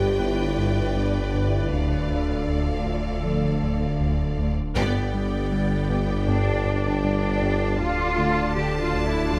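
Cinematic hybrid orchestral and electronic film score at 79 BPM in 4/4, futuristic and vast in mood, moving between G and D minor across this 9.4-second cut from a longer piece. A bright, focused violin section carries the melody high between F5 and A5, while a second violin section holds a soft-attacked, expressive line on D5, and a clear, intense viola section sits in the background as accompaniment. Beneath them, a mellow, very quiet French horn section and a swirling, evolving analog pad treated with phaser and chorus hold sustained chords, as a harp-like, ringing synth pluck spins arpeggios with a long release. The low end is heavy and layered: a round, wave-folded analog bass plays a riff, a punchy sub bass with a pitch-drop attack reaches down to D1, and a rich, smooth cello section, a distant double bass section and a roomy tuba fill out the bass. The ensemble hits an accent at 4.8 seconds as the second section begins, and a moderate scoring-stage reverb gives the orchestra a spacious sound.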